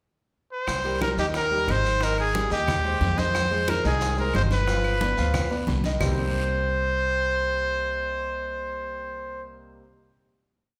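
Passionate and fiery, this short salsa piece opens with a bright, up-front trumpet at 0.5 s stating motif-based call phrases, over a dark, thumpy pizzicato upright bass playing a gut-string tumbao that anticipates the chords and a worn baby grand piano laying down a montuno in octaves. Behind them sit thick-skinned congas with slaps and open strokes, round low-tuned bongos in steady eighths with hand bell, very quiet woody claves keeping a two-bar time line, a raspy guiro and grainy, distant maracas, all of which drop out at 6.1 s as the band settles onto a final chord. The whole group sounds like it's playing live in one room, bathed in a wet, large studio reverb.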